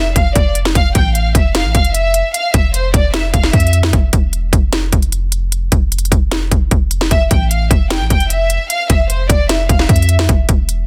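A bowed studio violin section opens this short cut of half-time trap at 151 BPM, its sul tasto tone and light vibrato placed close and intimate, with a touch of digital delay on the strings. A deep, boomy 808-style bass sounds beneath it from the start, mellow and sine-like with a noise layer, a fast attack and a decaying tail. The trap drum kit enters at 0.2 seconds, electronic and up front, with a hard-clipped kick, sharp snare and crisp hats. The harmony moves from D minor to F major seventh, and the violins drop out at 3.7 seconds, just before a break at 3.9 seconds in which bass and drums carry on. The violins return at 7.1 seconds over an A power chord on F. The mood is wistful yet triumphant, and the sound is dry and dense, with a heavily limited modern master.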